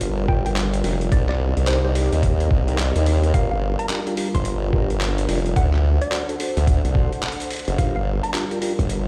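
An up-front, wobbling formant-sweep bass with chorus drives this playful, funky glitch hop cut at 108 BPM in G minor, its swung 16ths riding a Gm7, Cm7, D7 progression over a gritty, overdriven, pitched-down electronic kick and a sampler-style boom bap kit of handclaps, hi-hat and rim click. In the background, a moody analog pad holds sidechain-pumped chords, a soft tonewheel organ with key click and slow rotary speaker adds dub-echoed stabs from 0.3 seconds, and a woody, wave-folded pluck carries a dub-echoed melody. The whole fragment sounds as if played on a big sound system in a bare room, with a large studio reverb around it.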